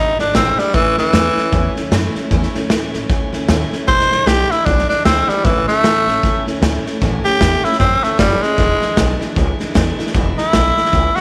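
Heard through light studio reverb, this rowdy, retro rockabilly excerpt swings at 153 BPM in A major over E7 and A chords. A raspy, growling tenor saxophone carries the melody up front with light vibrato, over a woody, thumpy pizzicato upright bass and a bright dreadnought acoustic guitar picked in the background, while a saturated, punchy garage drum kit in a pumping stone room joins at 0.2 s.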